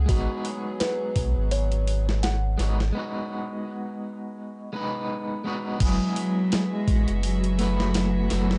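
A gritty, compressed sampler-style drum kit with a thumpy kick sits up front in this melancholic trip hop piece at 84 BPM, swung on the 16ths in F# dorian, alongside a round, deep sine sub bass. A slightly broken-up electric guitar with tremolo and tape echo plays accompaniment over reedy, gut-string studio strings holding background chords, while a delicate, tinkling music box with tape echo plays arpeggios until 2.9 seconds. A nasal, woody cello with vibrato and portamento takes the melody from 5.8 seconds with vintage 12-bit grit, joined at 6.7 seconds by a dreamy, reversed granular swell in the background, all in a dry, gritty hardware recording.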